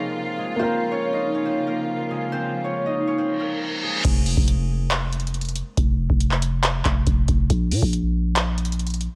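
A dry, close sound with little reverb frames this eerie, hard-hitting trap cut from a longer hip hop piece, running at 139 BPM in 4/4 with a half-time feel. It opens on a bright, ringing concert harp carrying the fingerpicked melody through a tape echo, over a dark, mellow grand piano tucked in the background and a woody studio string section holding soft-attack chords with light vibrato as the harmony moves from Fm to Bbm. An up-front reverse cymbal rises at 3.3 seconds to lead into the drop at 4.0 seconds, where the piano and strings fall away and the chord progression drops out. From there a booming analog drum machine takes over with a deep kick, metallic hi-hats, handclaps and crash, its tape-warm punch sitting up front beside a growling, buzzy 808-style bass with a fast attack and decaying tail. The harp carries on over this heavy low end until 6.6 seconds, leaving the drums and bass to finish the passage.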